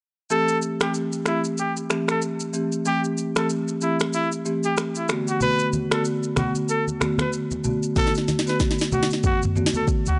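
A swung 94 BPM afrobeats groove in 4/4 comes from an electronic, produced afro-pop kit with a deep kick, sharp snare, rim click, finger snaps, shaker and toms, ending in a drum fill from 8.0 seconds, while low-tuned, ringing congas join at 5.4 seconds. Over an up-front marimba played with medium mallets, a punchy pop-style trumpet solo with light vibrato and analog delay carries the melody in A dorian, moving from Am7 to Bm7 in this hypnotic, smooth passage cut from a longer piece. The sound is dry and gritty, with small room ambience and a dark, rolled-off top.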